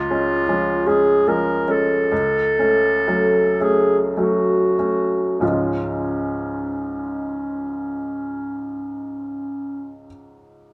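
A warm, roomy clarinet carries the melody at the front of this short excerpt from a lyrical, serene romantic duo for clarinet and grand piano, its tone also taking on a slightly distant quality. It sings in the middle of its range in Db major, over a bright, brilliant baby grand piano that supplies a natural-sounding accompaniment reaching down into the deep bass. The music moves in an unhurried 3/4 with free, rubato timing, somewhere between 46 and 79 BPM, and it slows through the opening phrase before a new phrase begins at 5.4 seconds. The harmony rests on Db, shifts to a darker Gb minor over a Db bass at 2.1 seconds, and returns home to Db as that second phrase starts. Close, detailed microphones capture both instruments within a moderate recital hall reverb of about 1.6 seconds, and the clarinet falls silent at 10.1 seconds, shortly before the piano finishes.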